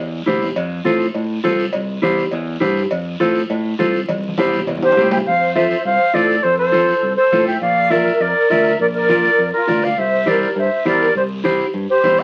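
Cumbia with a festive, sunny mood, heard as a short cut from a longer piece and coloured by the crackle of a very old 78 rpm record and a wet studio reverb. A growly, bright fingered electric bass and a dark, clean electric guitar carry the groove over soft, low-tuned congas in the background, a raspy, distant guiro, and ringing, close cowbell and timbales that drop out at 5.2 seconds, shortly after a drum fill arrives at 4.1 seconds. At 4.8 seconds an airy, reedy concert flute takes the melody up front, while a shimmering, boxy musette accordion adds a second line.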